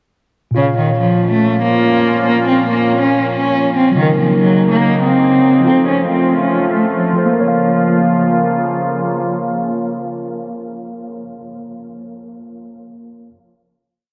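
Ominous and menacing, this short half-time drill piece at 141 BPM in Bb harmonic minor sets a dark, woody cello loop with light vibrato up front over mellow, spread electric piano chords and an evolving, detuned sawtooth pad with chorus, all soaked in a huge dreamy reverb as a filter sweep runs through the breakdown from 0.6 seconds before a final Bbm chord rings from 7.4 seconds.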